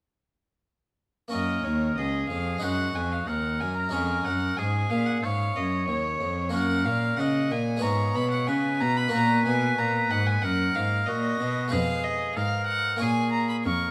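This baroque-style sonata movement with continuo, cut from a longer piece, has a serene, dance-like character at 92 BPM in a straight 4/4, set in F# major. All four players enter together at 1.3 s and carry on to 13.9 s. A single bowed violin takes the melody with a gut-string, period-style tone and light vibrato, sounding somewhat distant. A clear solo oboe, also with light vibrato and a roomy, classical-style presence, plays the second line beneath it. A brilliant, plucked harpsichord in the French style, with octave strings, fills in the accompaniment. A rich, reedy cello sits up front on the bass. The harmony moves from F# through G#7 and C#7/G# before turning to Fdim and A#m7, all within a moderate recital hall reverb.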